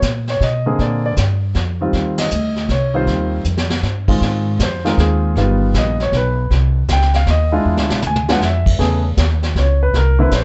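This short cut from a longer jazz piano trio performance has a dark, warm production with light reverb, swinging in three with a sophisticated, playful mood. Up front, a polished, present grand piano carries the melody with a touch of plate reverb, moving through rich harmony that includes rootless add9 voicings, an altered dominant and a minor chord. The upright bass is plucked on gut strings, sounding woody and thumpy close in the mix. The vintage brush kit, with its high-tuned snare and tight kick, sits in a small, roomy space. The trio hits a shared accent at 2.1 seconds, a new passage begins at 4.2 seconds, and the drums play short fills, the longer one at 7.6 seconds.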